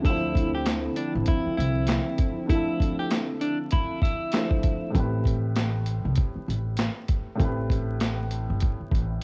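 Boom-bap hip-hop with a moody, tough, swung feel, heard as a short cut from a longer piece. A gritty, compressed sampler-style drum kit sits up front, with a thumpy kick, a high-tuned snare, handclaps and hi-hat, pitched down and re-recorded in a small room, while a woody, gut-strung upright bass is plucked pizzicato beneath it. A warm upright piano carries the accompaniment throughout, joined until 4.9 seconds by a deep, detuned analog pad of slow-attack sustained chords with chorus, and by a clean, picked electric guitar melody colored with phaser and tape echo. A very quiet, close finger snap appears between 0.7 and 4.5 seconds. The harmony moves from Dm9 to Am9 at 4.9 seconds, and the dry home-cassette sound carries a layer of vinyl crackle, with tape coloring on the drums, piano, pad and guitar.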